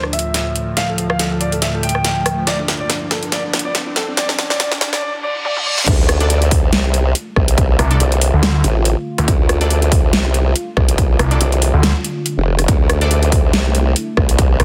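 A sawtooth formant-sweep wobble bass takes charge at the drop at 5.9 seconds in this aggressive, heavy half-time wobble dubstep excerpt at 141 BPM in D minor, joined by a punchy electronic kick, bright orchestra-hit-like synth stabs in the background, and, from 7.8 seconds, a growling, distorted saw bass, after a build-up in which a dark, mellow baby grand piano with delay carries the melody over an evolving wavetable pad with sidechain pumping, a dubstep drum kit with a huge snare and metallic hats, and a riser and reverse cymbal set back in the mix.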